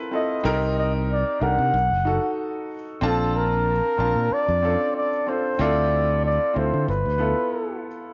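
A warm, intimate grand piano with audible action noise and deep bass opens this smooth, lush 1970s-style soul excerpt, soon joined by a dark, breathy flugelhorn carrying the jazz-style solo melody with vibrato, scooped notes and a whispered, soft attack, and by a growly, punchy fingered electric bass, all three up front in a moderate echo chamber reverb with a rolled-off top, over gently swung chords such as Cm7, Bbmaj7 and Dm9.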